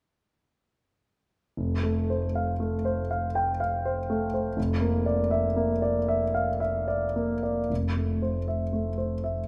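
Dreamy and hazy, this short cut from a longer impressionist solo piano piece drifts in 3/4 at a slow, rubato 52-62 BPM in F major. A warm concert grand sits up front with an intimate, natural tone, deep bass reaching down to F1, long sustain and audible action noise. It plays from 1.6 s to 9.5 s as the harmony moves from Fadd9 through Bb/F to Fmaj7 at 7.7 s, while a moderate recital hall reverb adds gentle space around the instrument.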